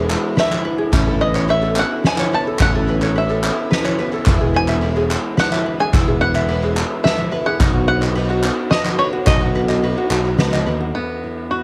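A twangy, percussive bluegrass banjo carries the melody in this excerpt of anthemic, hopeful indie folk with a building arrangement, moving at 108 BPM in a straight 3/4 in E major. Beneath it, a bright, shimmering plugged-in twelve-string acoustic guitar with octave-doubled strings picks out the accompaniment. A light ukulele plays arpeggios, and a round picked electric bass anchors the low end. A soft-mallet drum kit with a boomy kick, fat snare and ride cymbal joins at 0.4 seconds, and distant, hollow group handclaps add percussion. The harmony moves from E through Aadd9 and B, landing on E5 at 10.9 seconds, where a fingerpicked, up-front steel-string acoustic guitar briefly takes over the accompaniment beside the banjo. The banjo, guitars, ukulele and drums carry a cassette-tape grain, and the whole home recording sits in light reverb and small-room ambience.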